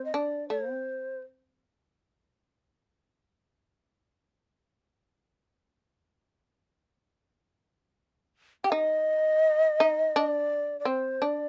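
A breathy, mellow bamboo shakuhachi carries the melody with vibrato and a chiff over a buzzing, plectrum-plucked fretless shamisen in this austere, calm fragment of Japanese traditional music in free time; both instruments sit up front in a close, dry and detailed sound, fall away at 1.2 seconds and return together at 8.6 seconds.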